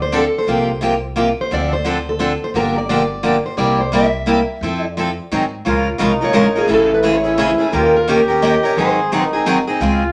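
A swung waltz pulse in three drives this lively, charming stretch of acoustic string swing in the jazz manouche style, cut from a longer piece. A bright, up-front steel-string guitar carries the chords with audible finger squeak, an upright bass supplies woody, dark, thumpy gut-string pizzicato, and a picked plugged-in steel-string guitar with a parlour tone states the melody. At 5.7 s the tune moves into a new section as a mellow flugelhorn enters with a present, vibrato-rich second line until 10.1 s, the band sitting in a wet studio reverb.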